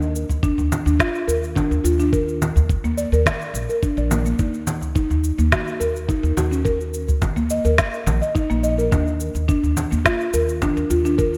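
Organic downtempo with a hypnotic mood, this short cut sets a buzzing, round marimba played with soft mallets up front, its arpeggios trailing digital delay, over a dark pizzicato upright bass carrying sidechain pumping, a gritty overdriven electronic kick, an up-front electronic shaker, congas and woody snare, and a deep udu sitting in the background from 0.3 seconds, framed by a lush hall reverb and bright 1980s-style digital production.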